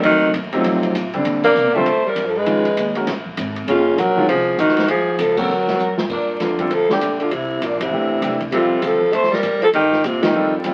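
A growling, raspy alto saxophone carries the melody over a clear, up-front tenor saxophone second line with scooped notes, backed by an intimate baby grand piano with audible action noise, woody pizzicato upright bass and a dark, boomy open jazz drum kit in this smoky, late-night swing-and-bop excerpt, whose band accents punctuate both sections while a drum fill at 5.8 seconds leads into a minor-key passage at 6.1 seconds, all heard through moderate studio reverb and the crackle of a very old 78 rpm record.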